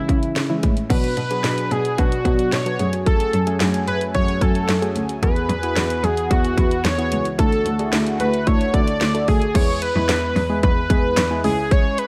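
A straight 4/4 house drum kit drives this cool synth-pop excerpt at 111 BPM, its punchy kick, cracking snare, hi-hat, handclaps and crash sitting up front beside a bowed cello bass that is rich and focused with a smooth, vibrato-laden top. Round analog keys with chorus and a mellow, detuned sawtooth tone carry the accompaniment, while a bold, thick unison lead with tape echo and vibrato takes the melody over chords moving from C#m through Bm, F#madd9, Eadd9 and Dadd9. An evolving, resonant pad with chorus and phaser glows in the background from 0.9 to 9.5 seconds, before a short closing passage on E and C#m, all set in a dark production with light digital ambience.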